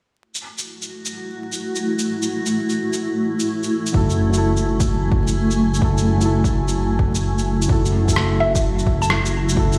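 A muffled, pitched-down shaker and rim click open this rainy, melancholic future garage excerpt at 128 BPM, swung on the sixteenths in F# minor over a single F#m7 chord. A granular cloud pad drifts in at 1.1 seconds, blurred and evolving with a bright, full-bodied shimmer, pumping against the beat through its own reverb. At 3.9 seconds a punchy, layered kick arrives together with a deep, rumbling detuned saw bass that sits up front with a saturated, beating growl, and a felt-muted upright piano whose soft, boxy tone carries audible action noise and a digital delay. Near the end, from 8.4 to 9.3 seconds, a woody, round mallet-like pluck adds a brief melody coloured by chorus, phaser and tape echo. The mix is played back through a big sound system in a bare stone room, with vinyl crackle lending a worn haze.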